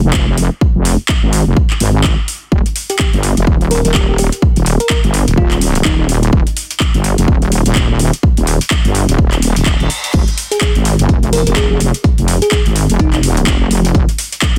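A heavy, detuned wobble bass dominates this aggressive, bouncy bass house excerpt, its saturated sawtooth tone sitting up front with chorus, tube grit and sidechain pumping. A punchy, tape-warm electronic kick drives the swung groove alongside a garage kit of overdriven, metallic hi-hats, handclaps and crash cymbal in a small room. A bell-like FM electric piano enters at 2.9 seconds with sparkling, decaying notes colored by chorus, phaser and digital delay, and it returns later in the clip. A reverse cymbal sits in the background just before 10.1 seconds, when a very quiet, gritty sampler-style kit adds hi-hat and snare. The mix is dry, dense and heavily limited, giving it a modern, loud finish.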